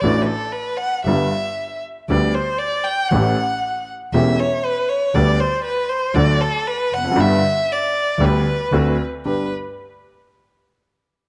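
A bowed violin takes a solo from the start, singing with vibrato, soft attacks and expressive portamento up front, over a smooth, vintage-toned grand piano and an intimate, close double bass played sul tasto with an airy bow and light vibrato. This is a passionate, tense tango in G major at 117 BPM in 4/4 with a rubato feel, moving through chords like A7, G/D and D7 before settling on G at 9.2 seconds. A moderate spring reverb gives the studio sound a lingering glow, and all three instruments stop at 9.5 seconds in this fragment of a longer piece.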